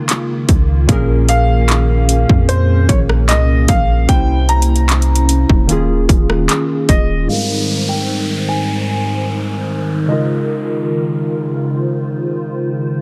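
A slow, straight 75 BPM trap pulse of overdriven drums with a hard-clipped kick, metallic hats, handclaps and rim clicks drives this tender, dreamy contemporary R&B excerpt in Ab major, where deep sine 808 bass sits up front beneath round, detuned analog keys, a hollow, flute-like pad with vintage ensemble chorus and a clear grand piano melody with delay. The drums stop at 7.1 seconds and the bass at 7.3 seconds, and an electronic downlifter then runs alongside the filter sweep through to 13.0 seconds in a dense, dry, heavily limited mix.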